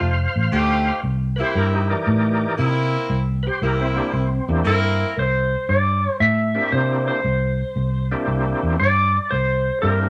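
A swung 116 BPM shuffle in 4/4 drives this rollicking, swaggering electric blues excerpt in C mixolydian, moving from F7 to C7 over a dark, round, foam-muted fingered bass that sits punchy and up front. A thick, lightly overdriven tonewheel organ accompanies throughout with key click, third-harmonic percussion, chorus vibrato and a slow rotary speaker, while a bright jazz-style horn section fires stabs with light vibrato until 5.1 seconds. At 4.7 seconds a clean, twangy lap steel takes the melody with slide and volume swells, the band heard in a moderate studio reverb.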